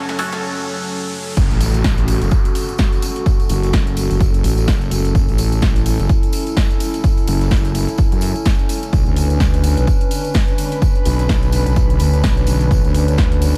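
Punchy and saturated, this swaggering, gritty bass house excerpt in F# minor at 127 BPM with a swung 16th feel opens on a brief build where an electronic riser and downlifter, a dark, nasal analog pad and a faint ethereal pad sit under a house drum kit and a very quiet, dusty sampler-style kit, before the drop at 1.4 s brings in an up-front kick, a jingly, distant tambourine and a heavy, overdriven wobble bass that pumps along with the pad, as the chords move from F#m to Bmadd9 and the airy pad returns in the background at 10.1 s.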